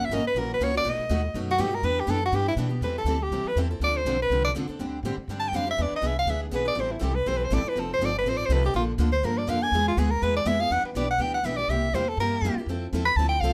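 Gypsy-jazz string swing in A minor at a fiery, swinging 243 BPM, this excerpt features a clear, close-miked soprano saxophone soloing up front with vibrato, subtone and scooped notes, over two picked steel-string acoustic guitars, one boxy parlour and one full-bodied dreadnought set in the background, and a woody, thumpy pizzicato upright bass, all in a small room with moderate reverb as the chords move from F#7 through Am7, Bbmaj7 and E to Fmaj7.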